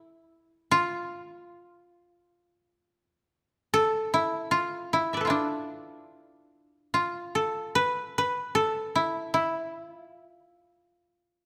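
Loosely pulsed and rubato, with uneven beats around 76 BPM in 4/4, this brief passage of Japanese traditional chamber music is austere and solitary. A lone koto, plucked with fingerpicks, sits up front with a woody, dry tone, moving between D4 and E5 across its 11.5 seconds. A moderate scoring-stage reverb of 1.6 seconds surrounds it, and the moment is cut from a longer piece.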